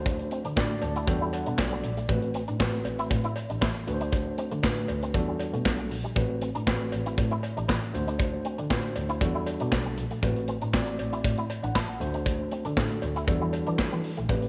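Early-eighties boogie funk in A dorian at 118 BPM with a slick, late-night mood, this section cycles through D7, Em11 and Am69 as a clear, nasal double bass played with an airy bow anchors mellow tine electric piano (which adds a fill from 0.6 to 2.1 seconds), an up-front acoustic drum kit with punchy kick, medium-tuned snare, hi-hat and handclaps, a metallic cowbell in the background, and a dark, compressed electric guitar riff through an envelope filter and ensemble chorus, all in light reverb and studio ambience.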